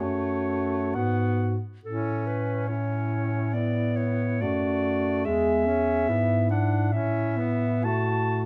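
A close-miked clarinet sings the melody up front in this solemn, melancholic classical passage for single-reed quartet, cut from a longer piece, as a smooth-topped alto saxophone with light vibrato carries a second line, a distant, roomy tenor saxophone with vibrato accompanies, and a mellow bass clarinet anchors the bass, the quartet moving with rubato in 4/4 through F#m, A and E7 chords inside a large studio's moderate reverb.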